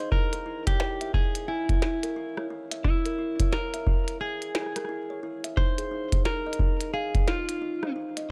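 Eerie and cerebral, this short IDM excerpt moves at 88 BPM in 4/4 with a swung sixteenth-note feel. A dark, clean electric guitar carries the melody, picked and compressed and placed up front with a digital delay trailing its notes. Alongside it, a kalimba plays arpeggios with a woody, hollow-box tone, fingertip plucks and mellow ringing, close-miked and dry yet full, with its own digital delay. A deep, analog-sounding electronic kick sits up front in a studio reverb from 0.1 seconds until 7.2 seconds. A glitchy drum kit adds a tiny snare, clicky hi-hats and rim clicks, all overdriven and set in studio reverb. The harmony rests on a rootless Dbm6 before shifting at 5.6 seconds to an F7 with its third omitted, all within a dark production that carries little reverb overall.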